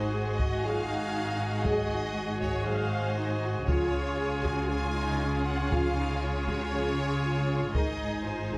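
Heavy-stick taiko drums, close and dry, thunder in from 0.4 seconds to drive this epic, relentless cinematic orchestral cue at 118 BPM in a straight 4/4, moving from Ab7 to Db and back to Ab. Above them, a lush violin section carries the vibrato-laden melody with a focused, smooth top while a second violin line adds expressive portamento. A background viola section, a rich cello section and a dark, woody double bass section fill the lower strings; a soft oboe-stop pipe organ holds baroque-voiced chords; and a mellow, vintage French horn section sustains harmony in the background from 0.6 to 7.9 seconds, all within a moderate recital hall reverb.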